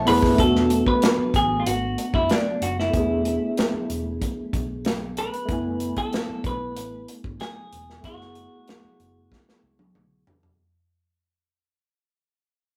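A mellow, slightly out-of-tune tine electric piano opens with a short fill before settling into smooth, cinematic 1970s-style soul at 94 BPM in F# minor, moving from E9sus4 to F#m11 as the passage fades out. A clean, compressed semi-hollow guitar carries the melody up front, over a dark, foam-muted fingered bass and a punchy acoustic drum kit that closes with a fill from 9.3 seconds. The rough rehearsal-room recording carries a glow of saturation and a short, wet reverb.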